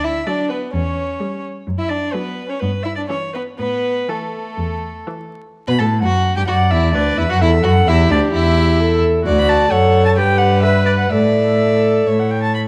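Two violins and a cello open together, the first violin carrying the melody with light vibrato and the close-sounding second violin playing a supporting line, while the cello's deep, warm bass anchors them and a smooth-topped viola joins at 0.3 s. This spirited, lively passage from a classical-period string quartet movement moves quickly with a rubato feel, and a new section arrives at 5.6 s. All four players share a reedy, gut-string period sound, with the violins rich in tone, heard in a moderate recital hall with vinyl crackle as it is cut from a longer piece.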